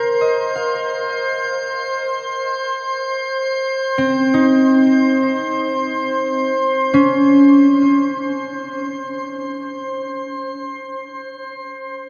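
Drenched in a huge, cavernous reverb, this melancholic and reflective ambient excerpt in free time, tuned to A4 = 445 Hz, sets mellow, ringing fingerpicked concert harp arpeggios with tape echo up front, moving from Bbsus24 to Cm until the harp stops at 9.8 s, over a glassy, bright texture of drifting, sine-like overtones with chorus and its own reverb that fades in across the whole passage.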